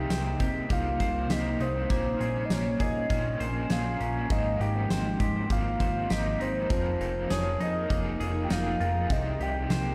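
Ethereal and dreamy, this dream pop excerpt moves at 100 BPM in Ab major, with a round, dark octave-layered synth lead carrying the melody over an airy, mellow pad and chords drifting from Cm7 through Bbm9, Abmaj9 and Fm11. A bright, twangy clean electric guitar plays arpeggios with subtle chorus and delay, while a lo-fi overdriven garage guitar with tremolo adds grit underneath, and a fat, detuned analog bass with a filter sweep anchors the low end. A huge arena drum kit sits up front with a punchy kick, fat snare, hi-hat and tambourine from 0.1 seconds, a very quiet metallic vibraphone rings faintly above, and the whole is heard through the echo of a bare stone room.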